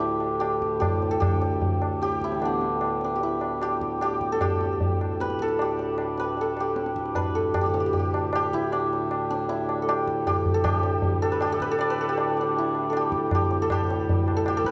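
Up front, a bright, shimmering santur carries the melody through this radiant, devotional Hindustani excerpt in raga durga, its hammered notes ringing through a tape echo over a reedy, nasal hand-pumped harmonium drone that sounds close and dry. Low-tuned tabla with a short ring joins at 0.2 s, and the pace speeds up across the whole 14.7 seconds as the music moves from its opening section into a second at 7.6 s. A moderate recital hall reverb sets the parts in a dark production.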